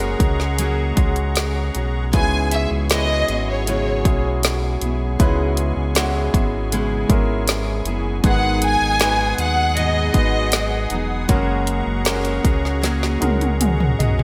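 An expressive violin section with vibrato and portamento carries the melody of this emotional, melancholic pop ballad excerpt from 2.1 to 10.9 seconds, over a deep house drum kit with a deep kick, woody snare, dark hats and gated reverb, a full sine sub bass, an intimate concert grand piano with audible action noise and long sustain, a reedy musette accordion holding shimmering sustained chords, picked steel-string guitar arpeggios with finger squeak in the background, and a very quiet, dark French horn section, set in a bright 1980s-style digital production with small-room ambience and closing on drum and piano fills.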